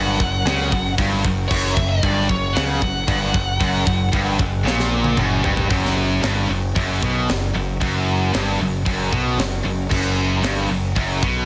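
A tight, up-front metal drum kit with bright cymbals, a high-tuned snare and a clipped kick drives this dark, aggressive heavy metal passage in 4/4 at 114 BPM. It opens in half time over an F# chord and rolls through a drum fill from 4.7 to 5.7 seconds into the next section. A growling, overdriven picked bass sits up front beneath an overdriven electric guitar riff and two high-gain distorted guitar riffs, one of them double-tracked and very quiet, all in the background. A warm high-gain lead guitar melody with tape echo rings out until 5.1 seconds, and a clear, very quiet bowed string section holds sustained chords with vibrato. It is all captured in a dry, dense, heavily limited modern mix with a faint mains hum, cut from a longer piece.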